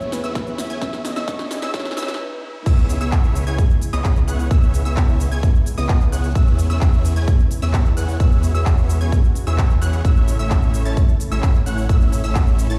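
This anthemic, triumphant festival progressive house clip opens on a build-up: a breathy, flute-like synth lead with chorus and tape echo sings a short melody over a very quiet, warbling vintage pad, a lush unison pluck arpeggio, a riser, and a drum fill from the overdriven big-room kit, whose crisp hats, claps, shaker and crash ride over a punchy electronic kick that enters at 0.4 seconds. A huge, dense, compressed supersaw riff with a moving notch and low-pass filter runs from the very start above a thick, saturated detuned saw bass, both pumping against the up-front, tape-colored kick. After a brief stop, the drop lands at 2.7 seconds. The mix sits in a large studio reverb, as if played on a big sound system in a bare room.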